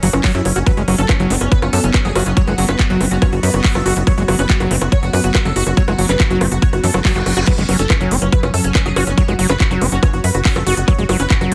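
Hypnotic and driving, this psychedelic trance excerpt runs at 141 BPM in a straight 4/4, cut from a longer piece and built on an F#5 chord. An up-front electronic kick drives the groove, layered with a produced kit of bongos, crash cymbal, handclaps and crisp hi-hats, while a tight, punchy sequencer bass pairs sawtooth and square waves with ring modulation and a plucked filter in the low register. Above it, a squelchy, gritty acid bass works a resonant, distorted riff with filter sweeps, sidechain pumping and tape echo. A bright, detuned supersaw stab carries the melody through phaser, pumping and tape echo, and a very quiet, morphing wavetable pad holds warbling, vintage-toned chords with chorus and a long release. A faint metallic FM wobble bass surfaces at 2.2 and again at 9.0 seconds, and a reverse cymbal with an electronic zap flickers in the background at 7.2 seconds, all set in light reverb and digital ambience.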